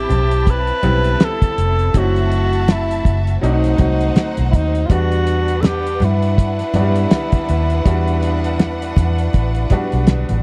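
An 81 BPM groove in 4/4 with a swung sixteenth-note lilt anchors this short cut from a lush, 1970s-style soul piece in E minor, its mood smooth and silky. A cloth-damped drum kit sits up front with a fat snare, tight kick and hi-hat, its dark, rolled-off top giving a thuddy feel, while a vintage muted electric bass, played with the fingers, adds a round, punchy, foam-muted low end. Very quiet, low-tuned congas ring from close by, and a bright concert grand piano fills in the accompaniment with brilliant, natural tone. Over this, a breathy tenor saxophone carries the melody in an intimate, whispered jazz style, with soft attacks, scooped notes, vibrato and a slapback echo, as a bowed symphonic violin section spins a lush second line alongside it. The harmony moves from Am9 through F#m7b5 and B7b9 to land on Em9 at 4.9 seconds, all captured in a dry, close studio sound with a small room reverb.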